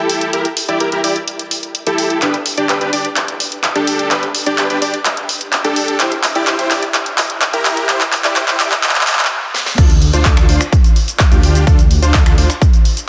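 A huge, euphoric supersaw lead carries the riff from the very start, its detuned sawtooth stack reinforced by a sub octave, pumped by sidechain, shaped by a low-pass filter and trailed by tape echo. This short cut from a longer piece of anthemic, powerful festival progressive house opens as a build-up over Edim, G/D and C chords. An overdriven house kit of cracking snare, handclaps, finger snaps, hi-hat, shaker and crash cymbal, re-recorded in a large room, drives a drum fill from 2.2 seconds. The music halts briefly at 9.3 seconds before the drop lands on D minor at 9.8 seconds. Here a punchy, overdriven electronic kick sits up front beside a thick, mellow detuned saw bass with chorus and its own sidechain pumping. Light reverb and a dense, heavily limited modern master keep the sound forceful and close.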